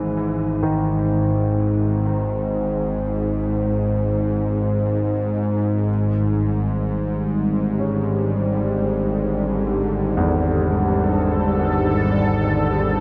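Drenched in a huge, cavernous reverb with a long eight-second tail, this dark, warm production feels unsettling from its first moment, a short cut from a longer dark ambient drone piece in free time, tuned to A4 = 442 Hz. Up front, a tense, string-like bowed drone holds the low register throughout, its detuned sawtooth tone edged with noise, ring modulation and vibrato while a filter sweep shapes it from start to finish. Beneath and around it, a dark, mellow concert grand piano with deep bass plays murky arpeggios set back in the mix, trailing tape echo. At 5.9 seconds a bright, resonant pad enters with sustained chords, its evolving, chorused layers swelling through a resonant filter with a sub octave underneath. The harmony moves from Emaj7/G# to Gsus2 at that same point, deepening the sense of unease.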